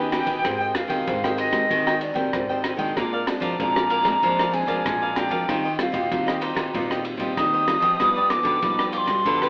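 A straight 4/4 pulse at 95 BPM carries this nostalgic, yearning samba and choro passage, cut from a longer piece and heard as a band playing live together in a moderate stone room with an AM radio sound. A wooden flute leads throughout with an airy, wood-toned voice, vibrato and a soft attack, seeming at once distant and up front as it sings between D5 and Eb6. Beneath it, a bright, crisp, picked cavaquinho and a fingerpicked classical nylon-string guitar with old strings fill out the harmony, while a second nylon-string guitar, deep and fingerpicked, holds the bass. A compact cocktail drum kit joins at 0.1 s with a punchy kick, ride cymbal and rim click, its dark, smooth sound rolled off at the top. The chords move from Abmaj9 through Bb9 and Eb69 to G7b13.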